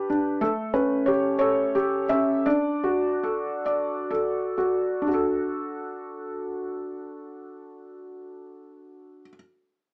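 A solo felt-muted upright piano opens this gentle, tender children's lullaby, its soft, mellow, warm tone sitting up front and intimate, with the audible noise of the action close at hand. Moving in an unhurried, rubato 6/8 sway, it slows from 0.4 to 5.1 seconds as an A7 chord settles onto D, then continues into a second passage before the piano stops at 9.3 seconds. Light reverb and a small-speaker sound frame this fragment of a longer piece.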